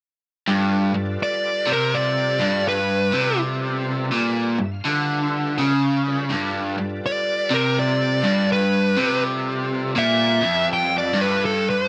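A driving, gritty rock piece with a swung feel opens on a G7 chord as a bright, double-tracked overdriven electric guitar picks a riff up front over a thick tonewheel organ holding sustained chords in the background through chorus vibrato and a slow rotary speaker, joined at 1.2 seconds by a fuzz lead guitar carrying a compressed, distorted melody up front, while the organ plays a fill from 4.1 to 6.3 seconds within a light reverb.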